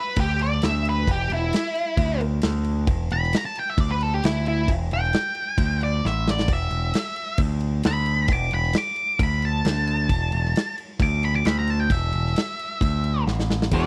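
An octave-fuzz lead guitar opens this gritty, smoky excerpt of blues rock power trio and southern rock in E minor at 133 BPM, its distorted solo with slapback echo riding up front over a growling, overdriven picked electric bass that is bright and forward, and a big-room acoustic drum kit with tight kick, medium-tuned snare, crash cymbal and a rolled-off top that drops fills at 6.0 and 13.3 seconds, before a double-tracked, cranked stack guitar riff with spring reverb cuts in at 13.7 seconds, the whole trio heard in a dry, close 1970s-style studio sound.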